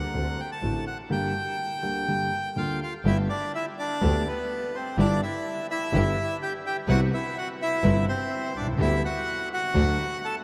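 Rubato 4/4 at 125 BPM carries this passionate, melancholic tango excerpt, as a reedy, bright bandoneon sings the up-front melody over a smooth, vintage-toned concert grand piano with deep bass and a nasal, earthy bowed double bass with light vibrato, while a very quiet, soft-attacked studio string section enters with expressive stabs at 3.1 s as the harmony turns from G minor to G major, the music set in a huge, wet reverb that suggests a vast, echoing space.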